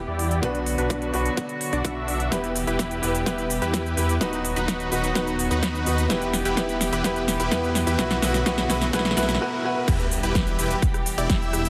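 Bathed in a huge ambient reverb, this emotional, anthemic festival progressive house excerpt in E minor at 127 BPM builds for nearly 10 seconds as a clear, slightly worn concert grand piano with tape echo and soft, floating bowed strings in the background pump against a lush, chorused detuned saw bass and a thick, up-front supersaw riff with a filter sweep and tape echo. Punchy, overdriven big-room drums with crisp hats, shaker and rim clicks, layered with an electronic kick from the opening moments, add a fill from 2.3 seconds over chords moving from Bm through Em and B/D#. A very quiet riser and swell lead to the drop at 9.9 seconds, where the piano stops and an impact lands on Em.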